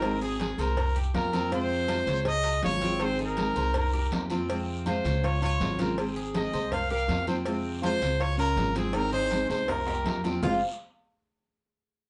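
Latin Cuban son with a guajira flavor, this danceable, nostalgic passage from a longer piece moves at 161 BPM in a straight 4/4 in F minor, the band playing live together in one moderately ambient studio room. Up front, a bright solo trumpet with vibrato sings the melody in a pop style, its tone distant and roomy, while a woody, thumpy upright bass plucks dark gut-string lines underneath. A fingerpicked steel-string acoustic guitar carries the accompaniment with audible finger squeak and an auditorium sound, a softer, warm classical nylon-string guitar adds a fingerpicked second line, and a metallic Cuban tres picks arpeggios on its doubled strings. In the background, ringing congas, round low-tuned bongos and cowbell struck with hard hands, agogo bells with metal-shell timbales, and a raspy guiro keep the dance going. The harmony cycles through Ab, C7sus4, Fm and Dbmaj7, a drum fill runs from 8.9 to 10.4 seconds, and a new section arrives at 10.4 seconds on an F5 chord.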